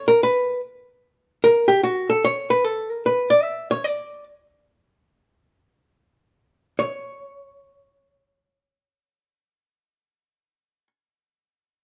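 Jazz waltz in 3/4 at 127-150 BPM with a swung feel, this warm, sophisticated excerpt features a solo archtop guitar, electric, dark, clean and compressed, with a hollow-body tone, picked up front in light reverb, playing until 4.2 seconds, with the tempo slowing until it returns at 6.8 seconds.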